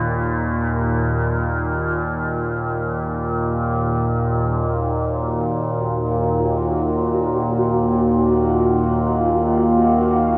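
An ominous dark ambient drone in free time and Eb minor opens with a resonant, up-front drone sweeping moving overtones, joined at 5.4 seconds by a bubbling texture with random filter steps and at 7.2 seconds by a deep, moody pad of detuned sawtooth chords under shimmer reverb, all steeped in a huge reverb and the warbling pitch drift of worn cassette tape.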